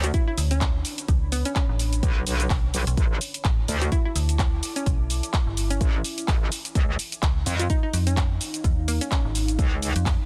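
A metallic wobble bass anchors this swaggering, bouncy bass house excerpt, sitting up front with a bright, saturated, aggressive growl that pumps against the kick, joined by a mellow, digital FM bass that enters at 0.4 seconds through tube saturation. A punchy electronic kick drives the 4/4 groove at 127 BPM with a light swing on the sixteenths, joined by a house kit of handclaps, shaker and bright hi-hats, both touched with studio reverb. Above, a hollow square-wave pluck carries the melody with detuned, ring-modulated bite, chorus, a filter sweep, vintage 12-bit sampler grit and dub echo. In the background, a deep, moody ambient pad warbles with slow-attack sawtooth unison, a sub octave and its own reverb, pumping with the sidechain. The harmony moves from Bmadd9 to Asus4 at 3.0 seconds and C#add9 at 6.8 seconds, all in a dense, heavily limited modern master with a dry overall room.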